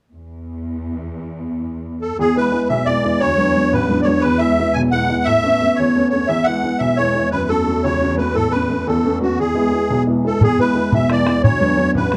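Rollicking and cheerful, this Celtic jig in 6/8 at 117 BPM in E mixolydian opens on a smooth, bowed string-section drone on low E before a reedy, shimmering musette accordion takes the melody up front at 2.0 s with plate reverb, joined at 2.2 s by a woody, worn, slightly detuned upright piano accompanying through chords such as E, D6 and Aadd9, while a boomy, open bodhran arrives at 10.4 s for the closing seconds of this dark, wet-sounding studio excerpt.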